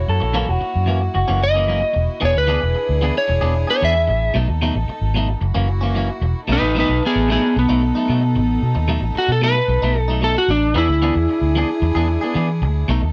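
An up-front electric slide guitar, played with fingerpicks and slightly broken-up with a slapback echo, carries the melody of this laid-back, swaggering blues excerpt at 112 BPM in B mixolydian, then takes a solo from 6.5 seconds. A dark, foam-muted vintage bass holds down the low end while a twangy, compressed clean guitar adds stabs, a lo-fi guitar through a small old amp plays a brief second line that stops at 1.4 seconds, and a distant chamber string section sustains soft, bowed chords beneath. The sound is dry and close, in a 1970s studio style, over chords that move through F#7, E7 and B7.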